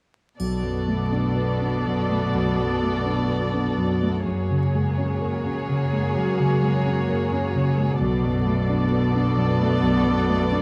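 A dark, mellow concert grand piano sits up front with deep bass and short sustain, carrying the accompaniment of this moving, longing cinematic film-score excerpt in B dorian, played rubato at around 61-66 BPM in 4/4. Veiled, con sordino string sections surround it, with bowed violins with vibrato on a second line, softly attacked violas filling the middle, and cellos anchoring the bass, while a triangle glints in the background only until 2.3 seconds. The harmony moves from Bm7 to F#add9 and back to Bm7, captured with close, detailed microphones, light reverb and a vinyl crackle.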